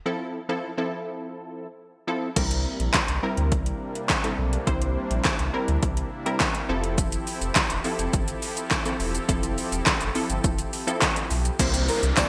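A punchy, funky polysynth comp with sidechain pumping plays alone to open this upbeat, carefree dance-pop excerpt, until at 2.4 seconds an overdriven deep house drum kit with gated reverb, a fat snare and metallic hats arrives alongside a deep, pumping sine-and-triangle sub bass and a smooth supersaw pad lying in the background under lush chorus; near the end an electronic downlifter sweeps in at 11.6 seconds, a velvety synth lead with vibrato appears at 11.9 seconds, and a jingly tambourine sneaks in at the very close, all set in a lush hall reverb with bright 1980s-style digital production.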